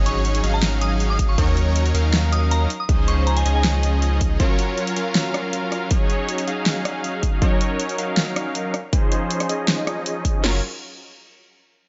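A lightly reverberant mix, its highs capped at 7.7 kHz, carries this playful, euphoric future bass at 159 BPM in a half-time 4/4 feel, set in Gb lydian over a cycle of Ab7sus4, Ebm7, Dbmaj9 and Gbmaj7. Huge, lush detuned supersaw chords drive the riff up front with sidechain pumping, delay and a low-pass filter sweep, above a deep, saturated triangle sub bass that drops out at 4.4 seconds. A soft, warbling FM bell with chorus and delay sings a brief melody while a barely audible downlifter sits under the opening, and a pop kit with fat snare, rim click and bright hats is joined at 1.2 seconds by a punchy big-room kit of kick, snare and crash.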